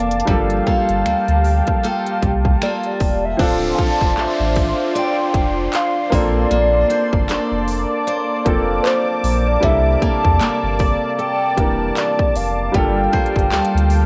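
Late-night and moody, this contemporary R&B excerpt at 77 BPM sways on a swung sixteenth feel, with a hollow, woody clarinet-like synth lead carrying the melody through chorus, phaser, vibrato and tape echo over a natural baby grand piano, a smooth detuned analog pad, bright fresh-stringed acoustic guitar arpeggios with audible finger squeak, a deep round sub bass, an up-front trap kit of hard-clipped kick, crisp hats, snaps, claps and crash, and a silvery zither ringing in the background, while an electronic downlifter sweeps through from 3.4 to 9.6 seconds as the chords move from C13 to Dm9 and Bbmaj9, much of it softened by a cassette-tape haze and light digital reverb.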